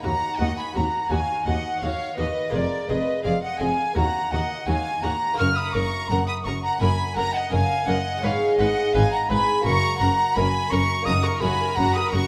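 Heard through the lingering reverb of a recital hall, this stormy, dramatic baroque-style concerto movement in Eb minor moves at a straight 84 BPM in 4/4, in a passage cut from a longer piece. An airy, distant silver flute joins the rich, vibrato-laden violins in carrying the melody, while a second, smooth violin line runs beneath. Bright viola and a delicate, fingerpicked lute in the background fill out the harmony, and focused double basses and even-toned cellos anchor the low end through nearly all of the 12.3 seconds.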